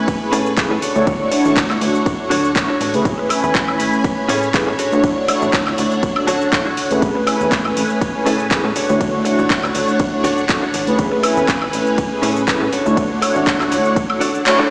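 A swung 121 BPM house groove in 4/4 drives this sunny, funky slice of filtered disco house, with a punchy, tape-warm electronic kick up front and a house kit of handclaps, hi-hat, ride, shaker and woodblock, while a plucky, wave-folded analog bass and a clean, direct-recorded electric guitar riff both pump with sidechain compression. Over them, a round, detuned synth brass with chorus, phaser and vibrato carries the accompaniment, and a lush vintage string machine holds sustained chords, the two alternating between Amaj9 and Dmaj7. The whole mix sits in a large studio reverb with a small-speaker character, and at 14.5 seconds the kick drops out on a band accent.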